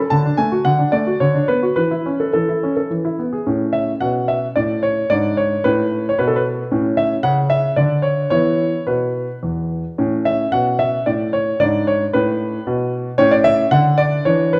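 This is a classical-period piano sonatina in A major, heard as a short cut from a longer piece, with a restless, serious mood. It moves at 110 BPM in 3/4 with a rubato feel, so the pulse stretches and gives. A solo grand piano carries the whole 14.6 seconds, spanning E2 to A5 with a clear, smooth, vintage tone, short sustain and an up-front placement. The opening phrase passes through D, Bm/D and A/E to E before settling on A at 3.5 seconds, where a longer second section begins, colored by a Bm13/G# and later a G#dim before resolving to A. Brief unharmonized moments and a bare E5 sonority add tension along the way. The piano sits in a wet recital hall reverb with a 1.6-second decay, and the production is dark and warm.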